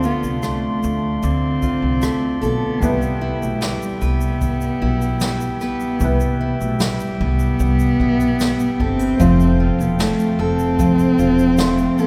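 Acoustic pop with a heartfelt, sunny mood, heard as a passage cut from a longer piece. A dark, bowed cello carries the melody up front and close, played sul tasto with vibrato. Beneath it, a full-bodied jumbo steel-string guitar is picked with audible finger squeak, a boxy upright piano sits in the background, and a clear, clean tonewheel organ holds sustained chords through a stopped rotary speaker. A woody pizzicato upright bass and a brushed drum kit with a boomy kick, medium-tuned snare, rim click and shaker round out the band, all bathed in a long cathedral reverb, as the harmony moves from Dm7 to Cmaj7 at 2.8 seconds and settles on F at 9.2 seconds.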